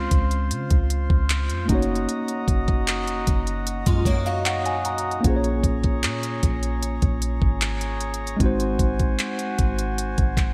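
Bright 1980s-style digital production with light reverb frames this dreamy, romantic contemporary R&B excerpt, which moves in a straight 4/4. A worn, slightly out-of-tune tine electric piano carries the accompaniment with a clean, direct tone, while a reedy, nasal hand-pumped harmonium holds breathing, band-limited sustained chords that pulse with sidechain pumping. Underneath, a soft 808-style bass sits deep and round, its sine-like notes striking quickly and then decaying into darkness. The electronic drum kit stands up front, with a knocking kick, smooth hi-hats and handclaps, all given a tape-warm character and gated reverb. The electric piano plays a fill starting at 3.7 seconds, and a bright picked steel-string acoustic guitar adds brief concert-toned arpeggios from 3.9 to 5.2 seconds, coloured by ensemble chorus and delay, as the harmony drifts from Dbmaj7 through Gb6 and Bbm7 to Ab7.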